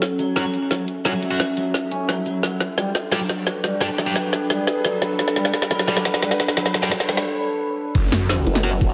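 Mechanical and dark, this excerpt of technical drum and bass at 174 BPM builds over F#m and G chords, with an overdriven drum kit of woody snare, bright hats and crash filling up front while a resonant, wave-folded pad sweeps with chorus and phaser, a lo-fi, warbling tape-like pad sits in the background, a twangy, slightly broken-up guitar plays chorused arpeggios, and a tight distorted guitar adds bright stabs with delay. A very quiet riser runs underneath until a break at 7.3 s gives way to the impact at 8.0 s. Just before it, at 7.9 s, a knocking electronic kick and a growling, detuned saw bass arrive, followed by a formant-filtered wobble bass, all in a lush hall reverb.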